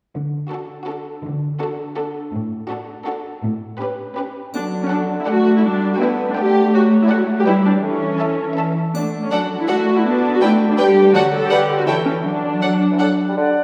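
A playful, whimsical cinematic film cue in D major at a brisk 164 BPM in 3/4, cut from a longer piece, where a warm cello section anchors the bass and a rich, up-front viola section fills the accompaniment beneath a clear, lush violin melody and a rich second violin line, with a soft-attacked bassoon and a dark-toned triangle joining at 4.5 seconds for the mischievous second section, before a pure silver flute, clear oboe and clarinet chime in together at 13.4 seconds, all set back in a wet scoring-stage reverb.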